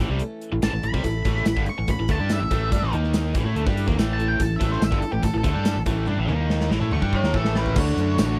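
A straight 4/4 pulse at 143 BPM drives this swaggering, sunny classic rock excerpt in A major, cut from a longer piece. A gated 80s drum kit in a stone room, with a punchy kick, medium-tuned snare, crash, hi-hat, toms and tambourine, keeps the beat and builds a drum fill late in the passage, while a round, dark fingered bass sits up front. A bright, double-tracked overdriven electric guitar carries the riff over a woody, boxy parlour acoustic with old strings tucked in the background. From 0.6 s an octave-fuzz lead guitar takes a gritty, distorted solo over A and D#5 chords. At 7.8 s the harmony shifts to D as a crunchy, double-tracked overdriven guitar with spring reverb and a very quiet tonewheel organ with key click and a slow rotary speaker join, and a jingly, barely audible tambourine flickers just before the end, all in a dry, close-sounding mix.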